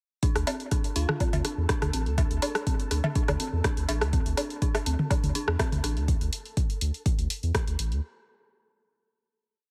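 An up-front, deep electronic kick drives this quirky, clinical minimal techno piece in D minor at 123 BPM, together with a thick, saturated sub bass rolling in staccato with sidechain pumping, tape-warm analog drum machine hats and rim clicks, a layered garage kit scattering cowbell, woodblock, tom and rim blips in cross rhythm through dub echo, an eerie, inharmonic detuned synth bell with chorus and tape echo looping a 6-step sequence that drifts against the bar, a brief sparkling FM electric piano phrase with phaser at 1.0 seconds, and a grainy, flickering texture holding a high note in the background, all set in a digital ambience.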